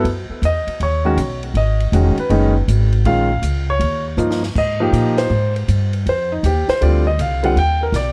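An intimate concert grand piano with audible action noise, long sustain and a touch of analog delay carries the melody up front in this relaxed, sophisticated jazz piano trio excerpt, swinging at 160 BPM in Eb major over a woody, thumpy pizzicato upright bass and a dry cocktail drum kit with dark cymbals, high-tuned snare and punchy kick, with a drum fill at 4.2 seconds and a band accent at 5.1 seconds amid lush chords such as Abmaj9 and Ebmaj13 in a light reverb.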